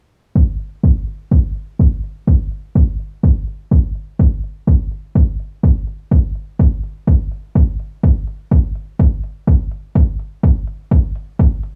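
Techno at 125 BPM in 4/4 with a light 16th-note swing, meditative and deep, in which a punchy analog electronic kick sits up front from 0.4 seconds while a tape-warm, low-pass-filtered analog hi-hat trails dub echo far in the background, a filter sweep runs through the whole excerpt, and a filtered digital ambience adds a small-room sense of space.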